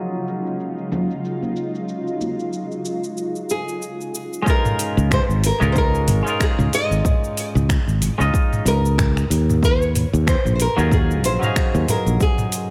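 A light reverb and low-pass filter soften this wistful, relaxed sunset chillout excerpt, which opens under a filter sweep at 93 BPM with a swung sixteenth-note feel, moving from Ebm11 to Db69 and back. A clean, bright semi-hollow electric guitar with delay accompanies throughout, while a dark, shimmering pad with chorus holds sustained chords only until 4.4 seconds. A produced R&B kit of cabasa, finger snaps, metallic hi-hat and toms sets the groove with brief ringing congas, and a fingerpicked nylon-string guitar with audible finger squeak carries the delayed melody from 3.5 seconds, before a deep, overdriven electronic kick and a growly, up-front fretless bass anchor the second half.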